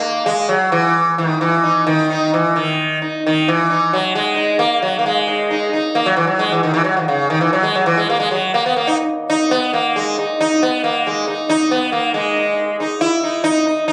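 A solo sitar carries this short Indian classical excerpt, its plectrum-plucked tone buzzing and round, with sympathetic strings adding a shimmering halo. The mood is meditative and full of longing, set in raga bhairavi on Eb at about 134 BPM in a straight 4/4. The instrument sits up front, moving between Db3 and Fb4 as the pace gradually speeds up across the full 13.9 seconds. After an opening passage, a new section arrives at 12.1 seconds and runs to the end of the cut. The sound carries the feel of a phone recording made in the room, with a club-like reverb and compression.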